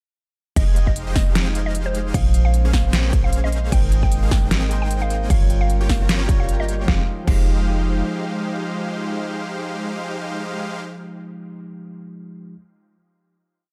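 Future bass with a dreamy, lush mood, built on a half-time groove with a light swing that drives a short drop before settling onto a final chord at 6.9 seconds. A punchy electronic kick and a tape-colored dubstep kit with a deep snare, crisp hats, hat rolls and crashes sit in studio reverb, while a boomy, sine-based 808-style bass holds sustained roots up front under a pumping sidechain. Huge, detuned supersaw chords throb in syncopated stabs with dub echo, and a woody, warbling FM pluck repeats a riff melody through chorus and tape echo. Beneath them, a breathy pad hums very softly and a bright Celtic harp ripples fingerpicked arpeggios in the background. At 3.7 seconds a barky, overdriven tine electric piano joins with gritty held chords and syncopated pushes through a combo amp; the drums drop out at 7.4 seconds, leaving the bass, keys, synths and harp ringing in a dark, dry mix.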